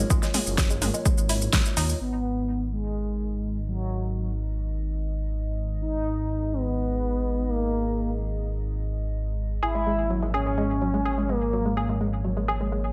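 Lightly reverberant with a digital sheen, this brooding, dramatic melodic techno excerpt opens on a punchy, overdriven electronic kick and a layered deep house kit with a fat snare, metallic hats, shaker and toms, both gone by 2.0 seconds. Underneath, a rumbling detuned saw bass with tube saturation and a moody analog pad with lush chorus sustain throughout, each breathing with sidechain pumping, while the pad carries a filter sweep from the second section onward. A woody, wave-folded pluck plays arpeggios through a filter sweep at the start, dressed in analog chorus, 12-bit sampler grit and tape echo, then returns at 9.6 seconds. From 2.0 seconds an expressive, nasal synth lead takes the melody up front, with vibrato, chorus and tape echo. The harmony moves from A#m to G#m, then settles on A#dim over G#.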